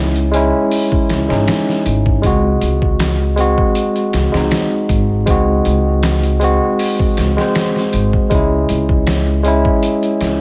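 A bright, clean tine electric piano sits up front in this melancholic, cinematic trip hop excerpt, its harmonic tremolo, tape echo and 12-bit sampler grit colouring chords that move from C#m to G#7 and back to C#m at 8.3 seconds in C# harmonic minor. A woody, dark pizzicato upright bass on gut strings plays beneath it at 79 BPM with a light 16th-note swing. From 0.2 seconds a compressed, pitched-down sampler-style drum kit joins with a thumpy kick, a medium-tuned snare and hi-hat, sounding gritty and re-recorded in a small room, all wrapped in light digital reverb and vinyl crackle.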